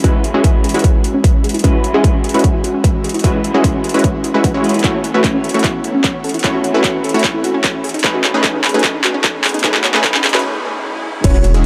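This lush, euphoric future bass excerpt opens on an E major build-up at 150 BPM in a half-time 4/4 feel. A punchy, overdriven electronic kick and a layered dubstep kit with metallic hats, handclaps and crash sit up front, while a detuned supersaw stab riff plays through a low-pass filter sweep, sidechain pumping and delay. Beneath it, a full-bodied unison pluck spins arpeggios, a bright, twangy, slightly broken-up electric guitar through a small old amp adds lo-fi accompaniment with lush chorus, and a very quiet, ethereal pad holds shimmering sustained chords as the harmony moves from E69 to F#m7 and B13. A faint riser and noise sweep build tension, a drum fill arrives at 4.8 seconds, and a brief break at 10.4 seconds clears the way for an impact at 11.2 seconds. There, an intimate grand piano melody with audible action noise and a deep, saturated sine sub bass enter with sidechain pumping. 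The dark production is bathed in a moderate shimmer reverb.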